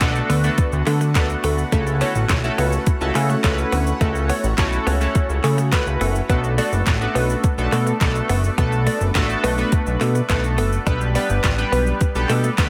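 Dance-pop at 105 BPM in 4/4 with a straight, upbeat and euphoric feel, cut from a longer piece and moving through D6, A6, Bm7 and G across its 12.7 seconds. A fat, thick analog bass built from detuned sawtooth and square waves sits up front with a filter sweep and a moving notch, its sidechain pumping giving the low end a breathing push. Glossy, retro synth keys with pulse-width modulation and chorus carry the accompaniment with fast-attack, decaying chords, pumping and trailing dub echo, while a very quiet, ethereal pad holds sustained chords underneath with a slow attack, long release, ensemble chorus and phaser. The electronic drum kit is smooth and produced, with a soft kick, deep snare, metallic hats, handclaps and shaker placed up front. From 0.3 s a punchy, catchy unison lead with a dark, noise-layered tone sings a melody in the background, pumping and echoing, alongside a clean, direct-recorded electric guitar picking a compressed riff with subtle chorus until 12.5 s, all set in a light reverb and an echo-heavy mix.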